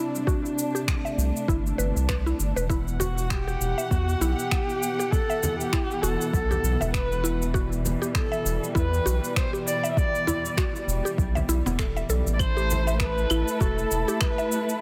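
Organic downtempo with a mystical, warm mood and a swung sixteenth-note feel, this passage is cut from a longer piece. A lush, bowed studio string section holds sustained chords from the opening, pumping against the sidechain, while a woody, mallet-like FM synth pluck spins chorused arpeggios through tape echo. Overdriven electronic drums, a soft kick with cabasa, finger snaps and claves re-recorded in a small room, arrive almost at once, and a round, deep analog bass with a fast attack sits up front from 1.2 seconds, also pumping. At 3.0 seconds a dark, expressive kamancheh takes the melody, one bowed player with vibrato, portamento and a soft attack, trailed by tape echo, as a frame drum played with hard hands sounds in the background from a live room. The chords move from C to E minor to A minor seven under a light reverb and a dense, heavily limited modern master.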